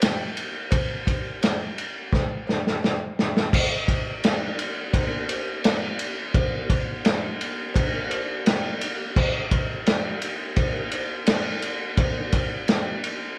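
A straight 4/4 rock groove at 85 BPM sets a swaggering, confident mood in this short excerpt cut from a longer piece. A vintage acoustic drum kit sits up front, with a tight kick, a medium-tuned snare, crash and ride cymbals, all heard through a muffled, lo-fi, rolled-off top that suggests a small room. A metallic cowbell rides in the background, its band-limited, vintage tone adding a bit of clatter beneath the kit. A drum fill from 2.1 to 3.5 seconds leads out of the opening section into the longer second passage, which carries the groove on until the cowbell stops at 12.9 seconds and the drums at 13.2 seconds. The band sounds like it is playing live together in one room, with a moderate studio reverb giving the performance a sense of space.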